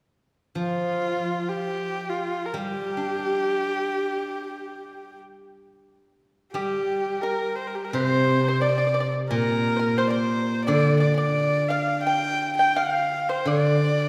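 Chinese traditional chamber music in G yu mode, wistful and graceful, moving in 2/4 at 68-88 BPM in this excerpt from a longer piece. From 0.6 seconds a close, intimate erhu carries the melody with light vibrato, soft attacks, portamento and an airy bowed tone, while a silvery, ringing steel-string zither, plucked with fingerpicks, accompanies up front. At 6.5 seconds a dry, percussive pipa joins in the background with a second line, all set in a lingering concert-hall reverb that lends a sense of distance.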